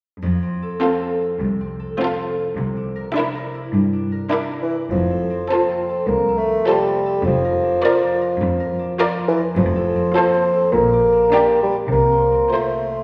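A dark, roomy solo bassoon stands up front from 4.6 seconds in this playful, whimsical film cue in F major at 103 BPM, entering over bright, ringing fingerpicked harp arpeggios, a lush cello section and, shortly after, a smooth double bass section on the bass, focused violin and viola sections on the inner lines, and a woody violin melody in the background, all set back in a scoring-stage reverb for a magical, mischievous mood.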